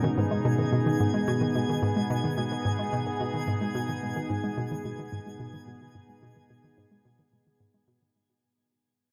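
Drenched in a vast, echoing cathedral reverb, this hypnotic, mysterious fragment of sequencer-driven ambient space music fades out across its full 8.2 seconds as a morphing, warbling wavetable pad holds a single minor chord up front, a hollow, bouncy square-wave pluck with chorus, tape colour and delay repeats a low riff, a filter sweep moves over the synth arpeggio, and a faint, sparkling granular texture twinkles high above.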